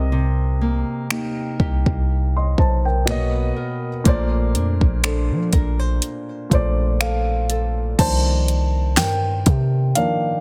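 A slow 4/4 groove with lightly swung sixteenths carries this sensual, moody contemporary R&B excerpt. A dark, intimate baby grand piano with audible action noise and short sustain accompanies a small, fingerpicked nylon-string guitar arpeggiating through a tape echo, under a deep, boomy 808-style bass with a sine body and noise layer. Electronic drums enter at 1.1 seconds with a soft kick, fat softly clipped snare, metallic hats, finger snaps and crash, before the piano takes a solo at 8.0 seconds in a dry, dense, heavily limited modern mix.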